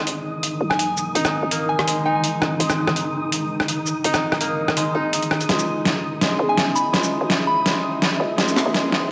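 Dark and tense, this short cut of half-time drum and bass at 166 BPM builds throughout, with an up-front, compressed, pitched-down sampler-style drum kit of hi-hat, rim click, shaker and snare whose fill runs from 5.5 seconds, over woody fingerpicked koto arpeggios, a growling 808-style bass and a deep, warbling ambient pad in the background, a flickering grainy texture, a soft FM synth bell melody in two brief phrases, and a very quiet riser entering at 7.6 seconds, all coloured by gritty cassette-tape character and a moderate echo chamber.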